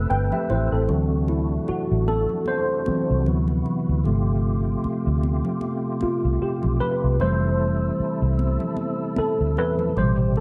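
Soulful and introspective, this R&B and neo-soul excerpt moves at 76 BPM with a lightly swung sixteenth-note feel. A worn, slightly out-of-tune tine electric piano sits up front through a combo amp with ensemble chorus, taking a solo from 0.9 s over chords that move from Am9 through D7 and G9sus4 to Fmaj7, while a fat tonewheel organ holds sustained chords with key click, light overdrive and a slow rotary speaker. Beneath them, a round, punchy, foam-muted vintage fingered electric bass plays up front, and high-tuned, dry congas ring in the background of a dark production with light reverb.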